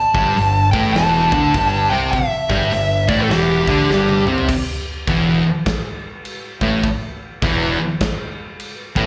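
Stoner and doom metal with a sludgy, heavy mood, cut from a longer piece and heard as a live gig through a club PA with a touch of room reverb. Two thick fuzz guitars grind out the riff from 0.1 s, one pushed up front and the other sitting behind it, both picked and distorted with a slapback echo. A dark, picked fuzz lead guitar carries the melody up front from the very start, colored by slapback and tape echo, and it drops out at 4.2 s. Underneath, a growling fingered bass with a bright, punchy overdriven edge anchors the low end, while a big acoustic rock kit with a punchy kick, medium-tuned snare, hi-hat, crash and toms sits in a dark, roomy space. A drum fill at 3.9 s leads from a G5 chord into a new section built on Esus4 at 4.5 s, where the riffing guitars, bass and drums press on together in a swung 4/4.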